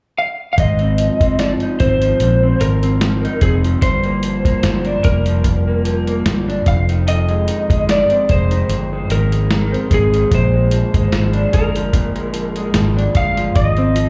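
A lazy 74 BPM groove in 4/4 with a gentle 16th-note swing sets the pace for this nostalgic, sunny slice of indie and bedroom pop in Ab lydian, cut from a longer piece. The lo-fi sampler-style drum kit sits up front, pitched down and muffled, with a thumpy kick and a medium-tuned snare alongside hi-hat, all carrying the roomy character of being re-recorded in a large space. Beneath it, a vintage muted fingered electric bass stays low and dark, its foam-muted tone round and punchy, while an electric guitar through a small old amp comps with a slightly broken-up, picked sound, bathed in lush chorus and a warbly pitch drift. The electric slide guitar carries the melody from 0.2 seconds, its dark, compressed tone played with fingerpicks and given a lush chorus and slapback echo, joined by the band at 0.6 seconds. Chords move from Ab6 through Gm7, Fm7 and Bb7 before settling back on Ab6, and the whole performance sounds like a live gig heard through the venue's PA, wrapped in club reverb.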